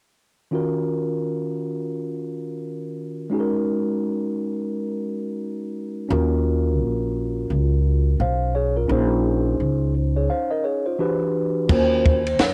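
A clean, tape-worn tine electric piano carries this smoky, swung jazz-hop fragment from 0.5 seconds; a woody pizzicato upright bass joins at 6.1 seconds, and after a brief break a dry cocktail drum kit with dark cymbals and a punchy kick arrives alongside a ringing soft-mallet vibraphone at 11.7 seconds, set in a light, homespun room.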